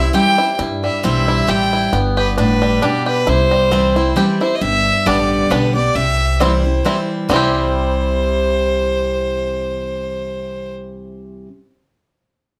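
Rustic and joyful, this short bluegrass excerpt moves at 134 BPM in three-four time with a swung lilt, settling in C major and shifting between C and G chords. A single bowed fiddle carries the melody up front, its tone nasal and earthy with light vibrato, a smooth top end and a touch of plate reverb. Beneath it, a dreadnought steel-string guitar picks a bright, full-bodied accompaniment, and the occasional finger squeak can be heard. The banjo, played with fingerpicks, adds twangy, percussive arpeggios, while a pizzicato upright bass anchors the low end with a woody, dark tone. The fiddle drops out at 10.7 s, leaving the guitar, banjo and bass to ring on briefly in a moderate studio room until about 11.5 s.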